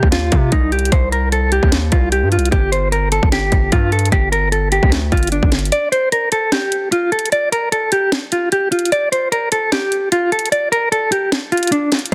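Brooding, dark trap at 150 BPM in a half-time feel: a clean, fingered electric guitar carries the melody with tremolo and delay over Cm and G5 chords, a saturated, aggressive 808-style bass with a noise layer drops out at 5.7 seconds, when the chords stop and the kick is muted until 12.1 seconds, leaving the sharp snare and metallic hi-hats of the electronic drum kit, all in a dense, heavily limited mix with light reverb.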